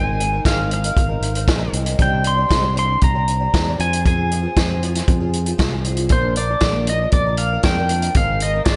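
This folk rock and heartland rock passage, cut from a longer piece, moves at 117 BPM in a straight 4/4 and carries a reflective, wistful mood, tuned slightly low to A4 = 438 Hz. A bright, twangy pedal steel guitar carries the melody up front, its clean, compressed tone shaped by fingerpicks, slide and volume swells and touched by slapback echo. Beneath it, a picked twelve-string acoustic guitar supplies a dark, woody and boxy accompaniment, its octave-doubled old strings shimmering through lush chorus and slapback echo. A fingered electric bass sits up front with a warm, direct and amped sound, while a vintage drum kit enters at 0.2 s with a punchy kick, medium-tuned snare and hi-hat, its natural small-room character rolled off at the top. The chords move from Abadd9 through Cmadd9, Fm and Bb before returning to Abadd9 at 8.2 s, all framed by light reverb and a small room ambience.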